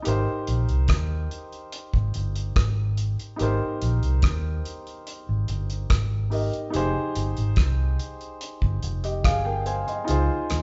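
Heard as a band playing live in one room, with a moderate large-studio reverb and a dulled top end, this short lovers rock reggae passage is cut from a longer piece. A dark, round, foam-muted vintage electric bass, fingered and amped, sits up front beside a damped 70s drum kit of hi-hat, tight kick and rim click that sounds dry, airy and polished, while a warm, natural grand piano plays the accompaniment. The bittersweet, longing mood rests on harmony moving from Abmaj7 to Fm7 at 6.7 seconds and Dbmaj7 at 10.1 seconds.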